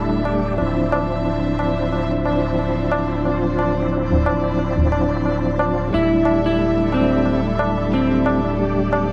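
Vinyl crackle and a cassette-recorded haze in a moderate room frame this smoky, cinematic trip hop excerpt in D minor at 90 BPM with a light 16th-note swing, where an up-front, reedy tonewheel organ with key click, fast rotary speaker, chorus vibrato and tape echo and a rich, earthy bowed chamber string section with plate reverb hold A7sus4/D and Dm9 chords over a round, soft dub sub bass on D1 and a ringing, high-tuned tabla, while a slightly broken-up electric slide guitar with tape echo joins to play a short melody from 5.9 to 8.4 seconds.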